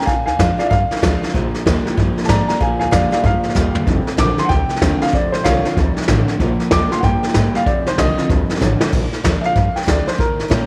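Rockabilly at 190 BPM with a swung feel in Bb mixolydian, rowdy and upbeat, where a dark, mellow upright piano solos over an up-front brush drum kit with dark cymbals and a punchy kick, thumpy pizzicato upright bass on gut strings, a bright picked dreadnought acoustic guitar with finger squeak in the background, and a twangy, slightly broken-up electric guitar riff with subtle chorus entering at 1.3 seconds, all in a light small-room reverb, with drum fills at 3.6 and 8.6 seconds before a new section begins at 8.9 seconds.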